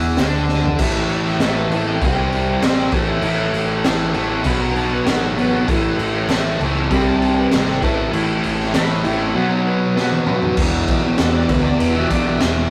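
A double-tracked, fuzz-drenched guitar riff leads this swaggering, menacing garage rock excerpt, driven by growly overdriven bass, a punchy raw drum kit with a high-tuned snare and fills at 0.5 and 10.0 seconds, faint crisp handclaps, and a slightly broken-up slide guitar melody entering at 1.4 seconds in the background, all captured in a rough rehearsal-room sound with tube saturation and light reverb.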